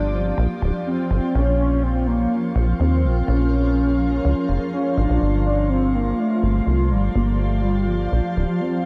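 A melancholic, cerebral IDM passage cut from a longer piece opens at 0.0 seconds with all three parts together, at a steady 124 BPM in 4/4 with a straight feel in G minor. Up front sits a deep acid bass, rubbery and resonant, its sawtooth tone shaped by a filter pluck with a fast attack and tube saturation giving it a dark, decaying bite. Above it, a velvety synth lead carries the melody in a smooth blend of detuned sawtooth and triangle waves, with vibrato, chorus, shimmer reverb and analog delay. Behind both, a granular cloud pad holds sustained chords that feel blurred and evolving, a mellow, full-bodied sine unison with a moving notch, slow attack, long release and its own reverb plus shimmer. The harmony moves through Bbm7 and settles on Gm7, and the bass drops away at 8.5 seconds while the lead and pad ring on to 8.9 seconds. The echo-heavy mix sits in a moderate spring reverb, lending the whole a hazy, introspective space.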